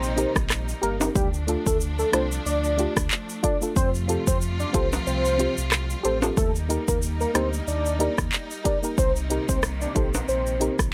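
Bouncy and sultry, this dancehall excerpt moves at 92 BPM in 4/4 with a light swing on the sixteenths, as an up-front electronic afro-pop kit with a deep kick, crisp hats, handclaps, rim clicks and shaker drives it over a full sine sub bass with an octave layer and bright acoustic tube shaker and timbales sitting in the background. A velvety, detuned synth lead carries the melody with chorus and tremolo, while a soft, round filtered pluck with chorus enters at 0.2 seconds as accompaniment and a lush, bowed studio string section holds sustained chords that pump with sidechain. The harmony moves through Cm7, Dm, Fadd9 and Eb before returning to Cm7, all in a dry, close-sounding mix.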